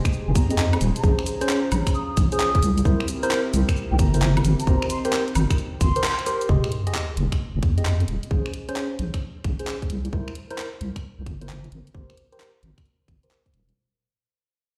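A deep, wobbling bass sits up front through this skippy, soulful two-step garage cut, its dark, compressed tone running from 0.3 seconds to the end. An overdriven, tight electronic kick and a layered garage kit of finger snaps, handclaps, hi-hat, shaker and woodblock carry the swung groove, both touched by studio reverb. A smooth analog pad holds sustained chords through the opening half while a distant wooden flute, pure and mellow with vibrato and tape echo, floats a melody in the background. A clean tine electric piano plays stabs through a combo amp, colored by phaser and tape echo, with a filter sweep applied to it in the back half. The kick drops out at a band accent around 6 seconds, then a sub drop lands as an impact at 6.5 seconds, after which the pad and flute are gone and the remaining parts fade out over chords cycling from Fm9 through Bbm9, C7 and Abmaj9. The whole mix rings in a bare stone room, as if played on a big sound system.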